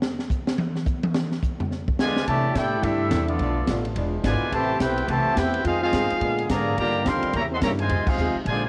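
Big band swing, joyful and energetic, opens with a drum solo on a punchy, up-front kit with a high-tuned snare and dark cymbals, its sound carrying a cassette-tape grain. At 2.0 seconds a clear, vintage-toned trumpet section takes the melody with vibrato, joined by a bright, close-miked trombone section on a second line, also tape-colored and bathed in plate reverb. A woody pizzicato upright bass, a very quiet clean hollow-body archtop guitar and a soft trombone section holding sustained chords fill out the harmony, and the band hits a shared accent at 8.0 seconds in a small, home-recorded room.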